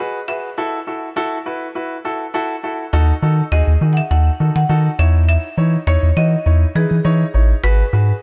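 A dry, dark mix carries this bittersweet yet energetic dance-pop excerpt in C# minor at 102 BPM, where a bright, woody marimba struck with hard mallets sings the melody through a dub echo over clear, polished baby grand piano chords moving from G#m7 through D#dim to C#madd9/E, until a deep, round analog bass with a filter sweep arrives up front at 2.9 s.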